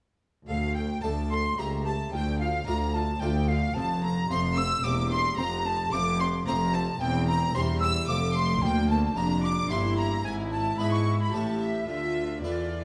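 A silver concert flute carries the melody from 0.5 seconds, its pure, metallic tone blending with two bowed violin sections that share the line and a second part in the same high register, one focused with vibrato and the other smooth and even. This is a dramatic, driving baroque-style concerto movement in D minor at 110 BPM in 3/4, cut from a longer piece, where a brilliant, airy harpsichord plucks its accompaniment in the background beside a lush viola section sliding with portamento. Cellos and an up-front double bass section anchor the bass together through to 12.8 seconds, the whole ensemble set in a moderate stage reverb that closes the passage on a D minor chord.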